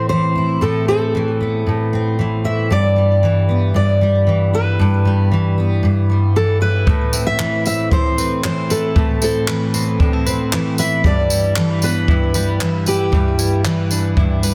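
A dense, heavily limited modern mix sits in light reverb and small-room ambience for this reflective, wistful acoustic pop fragment. A fingerpicked jumbo steel-string guitar carries the melody up front, its full-bodied tone trailed by delay, while a double-tracked dreadnought, also fingerpicked, lays down the accompaniment beneath it in a straight 4/4. The harmony alternates between Amadd9 and Em7/G. At 6.9 seconds a clean, compressed electric guitar, recorded direct and picked, adds delayed arpeggios at a lower level. A jazz brush kit with a boomy kick, handclaps and tambourine joins at the same moment, sounding natural and up front. The melody guitar drops out at 13.6 seconds, leaving the accompaniment, arpeggios and drums to close out this section of a longer piece.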